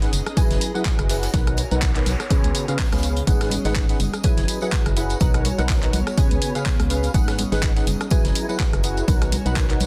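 A dense, heavily limited modern master in a studio ambience carries this energetic, bittersweet piece of piano house, cut from a longer track and running at 124 BPM in 4/4 with a 56% swing on the sixteenths. A hollow, nasal, percussive organ stab drives the riff with chorus, digital delay and sidechain pumping, while a dark, organ-like FM bass with a fast attack and decaying notes sits beneath it, also pumping. A dry, punchy electronic kick enters up front at 0.4 seconds, alongside a layered garage kit of bright hats, handclaps, rim click and tambourine whose snare is softly clipped. Further back, a jazz brush kit with a high-tuned snare adds filtered hi-hat, snare and tambourine, and vintage, band-limited tambourine and congas join at 3.3 seconds. A cloudy, evolving granular pad with a slow attack and long release blurs the background, and a noise sweep passes faintly from 1.7 to 3.3 seconds as the chords cycle through F#9sus4, Bmaj7, C#7 and G#m7.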